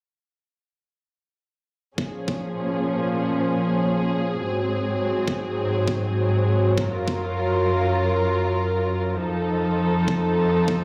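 Glitch hop at 100 BPM in Bb minor with a swung 16th-note feel, playful and funky, cut from a longer piece. A muted studio string section holds dark, veiled sustained chords from Bbm7 through Ab7 and Gbmaj7 to F7, coloured by vintage 12-bit sampler grit and sidechain pumping, while an overdriven, layered electronic kick knocks up front from 2.0 to 10.8 seconds. The sound feels like a big system in a bare room, wrapped in a large studio reverb.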